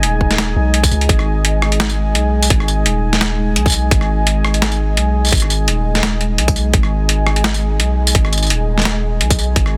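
A deep, mellow 808-style bass sits up front from the first second, holding long sine tones with a fast attack that decay beneath this heavy, dark half-time drum and bass fragment at 170 BPM in G# minor, cut from a longer piece. A boom bap sampler-style kit rides beside it, its hi-hat, rim click, medium-tuned snare and tambourine sounding gritty, compressed and overdriven, with a lightly swung half-time feel. From 0.2 seconds an electronic kick joins, tight and layered, the most forceful part of the mix, and like the sampler kit it carries the boxy character of a small room. Behind them a moody ambient pad sustains chords built from detuned sawtooth unison with a sine sub octave, its slow attack, long release, chorus and built-in reverb giving it a shadowy depth while sidechain pumping makes it breathe around the beat. The overall sound is dry and dense, pressed into a heavily limited modern master.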